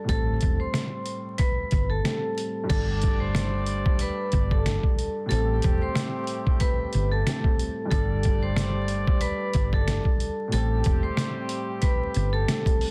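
Soulful boom-bap hip-hop excerpt at 92 BPM in G major, swung on the 16ths, where a gritty, pitched-down sampler drum kit with a thumpy kick sits up front over a round, hollow-body fingered electric bass, while a bright, ringing hard-mallet vibraphone carries the melody through tape echo above a dark, woody upright piano with a cassette-tape tint, and a mellow, tight horn section in octave doubling adds stabs from 2.7 seconds, all cycling between Am7 and Gsus2 in a small room under vinyl crackle and a dense, heavily limited master.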